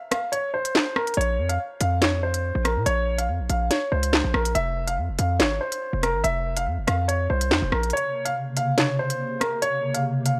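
Cold and dark, this drill-style hip hop excerpt moves at 142 BPM with a half-time feel, as a mellow baby grand piano carries the melody with long sustain over an electronic kit of sharp snare, crisp hi-hats, rim clicks and handclaps. The punchy, heavy 808-style bass arrives at 1.2 seconds under Bbmadd9 and F5 harmony, hitting with a fast attack and decaying tone before dropping out at 7.9 seconds. From there a hollow, flute-like pad with a warbling, vintage ensemble chorus holds soft sustained chords to the end, all set in light reverb and digital ambience.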